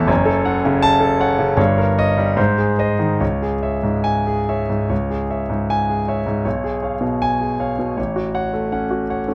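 Romantic classical character piece for solo piano in C# minor, stormy and brooding, moving with free rubato at 69-83 BPM in 2/4, where a clear, polished concert grand with deep bass, long sustain and audible action noise sits up front under close, intimate miking in a dry room, shifting to a new section at 4.9 seconds and passing from F#m through G# and C#m toward a closing F#m/A in this brief cut from a longer work.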